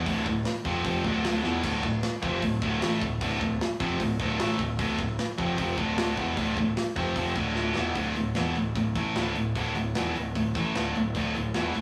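Dark and aggressive, this heavy metal excerpt drives a straight 4/4 riff with a bright, up-front distorted guitar over a sludgy overdriven guitar in the background, a fuzz-laden picked bass and a tight acoustic drum kit with bright cymbals entering at 0.1 seconds, with drum fills at 1.4 and 7.6 seconds before the harmony shifts from D minor to a D power chord at 8.0 seconds, all heard in a rough rehearsal-room recording with moderate stone-room reverb.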